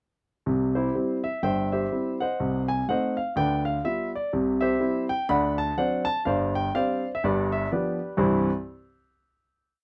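Stride piano jazz, swinging and exuberant, played by a lone grand piano with a warm, polished sound that sits close and up front in a dry booth with moderate, short ambience. The piano carries a tune over a stride bass and chords from 0.5 seconds, moving through a brisk swung progression before settling on a final C chord at 8.2 seconds, in the manner of a present, close 1970s-style studio recording.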